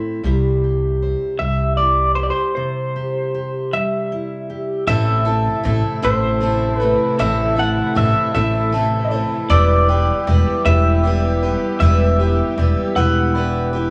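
Folk in a lilting 6/8, warm and nostalgic, cut from a longer piece and captured as a home recording on cassette with small-room ambience and light reverb. A full-bodied, fingerpicked jumbo acoustic guitar opens the passage up front, joined at 0.2 s by a woody, pizzicato upright bass on steel strings that sits close and dark beneath it. From 1.4 s an electric guitar through a small old amp carries the melody, slightly broken-up, compressed and lo-fi, shimmering with harmonic tremolo and a tape-worn cassette character. At 4.9 s the fingerpicked guitar gives way to a bright parlour acoustic played with a pick on fresh strings, while a large celesta adds bell-like, sweet arpeggios from hard felt hammers. A dark studio string section enters at the same moment, bowed sul tasto with light vibrato and a soft attack, holding intimate sustained chords in the background as the harmony moves from C to Am and then Em.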